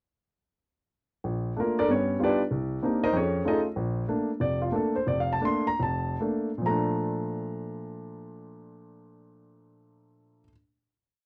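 A warm grand piano enters alone at 1.2 seconds with a bebop-style theme over a stride accompaniment and close voicings, swinging in 4/4 in B-flat major at a relaxed pace between 132 and 191 BPM as it moves through Bbmaj7, G7b13, Cm9 and F7alt before returning to Bbmaj7. The tempo slows from 3.8 seconds, and the short piece settles on a final chord from 6.6 seconds. The piano's short sustain sits up front in a dry, close 1970s-style studio sound with light reverb.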